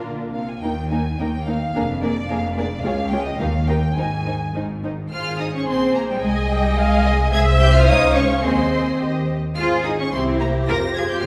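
The string orchestra sounds from the opening moment in a cheerful, lively classical-period movement with a brisk two-beat metre, cut from a longer piece. A rich, focused violin section carries the melody in a high register, its smooth-topped tone bowed with vibrato, while a second violin section, darker and woody, moves beneath on its own line. Bright, intense violas supply the accompaniment from close by, and a clear cello section joins the bass at 0.1 seconds alongside double basses that sit up front with a soft attack and a warm, expressive tone. The music turns to a new section at 5.1 seconds, and the harmony moves through a run of chord changes before arriving on F minor at 10.7 seconds. The ensemble is heard from further back in a recital hall, its lush bowed sound carried by a wet reverb.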